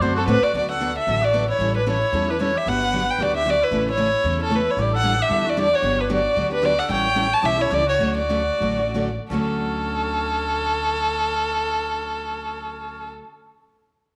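Two bright picked steel-string acoustic guitars, one squeaking under the fingers and the other boxy and very quiet, start together with a woody, thumpy pizzicato upright bass and a softly attacked cor anglais second line, before a rich, expressive bowed violin with vibrato, portamento and slapback echo takes the up-front melody at 0.2 s in this lively, swinging jazz manouche fragment in D major, moving at 159-227 BPM and slowing from 6.9 to 9.3 s within a small, reverberant room.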